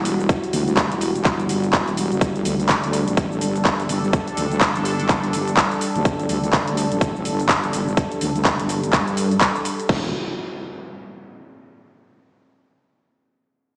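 Bass house at 125 BPM in E minor with a swaggering, gritty 16th-note swing, driven by a heavy, saturated wobble bass of sawtooth and sine under a filter sweep, an airy, detuned pad sustaining Emadd9 and Gsus2 chords with sidechain pumping, and an up-front tight electronic kick alongside a garage kit of metallic hats, handclaps, shaker and crash, before an electronic impact lands at 9.9 s, the mix cloaked in lush hall reverb and the stony echo of a big sound system playing in a bare room, heard through a small speaker.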